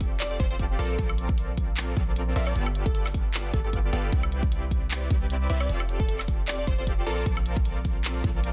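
Future bass with a lush, euphoric mood, this short excerpt moves in a swung half-time feel over rich chords such as Bbmaj9, G9 and Cmaj9. A detuned sawtooth supersaw stab plays the riff with a filter pluck, carrying a cassette-tape character, sidechain pumping and a digital delay. Underneath, a deep, boomy 808-style bass with a sine body and noise layer decays under its own sidechain pumping, while a punchy, layered electronic kick and a produced pop kit of handclaps, hi-hat and woodblock drive the groove. From 0.2 seconds to 7.4 seconds a catchy plucky unison lead carries the melody, its sound shaped by a filter sweep, a moving notch and vibrato, with dub echo trailing behind. The mix is dry and dense, with a heavily limited modern master.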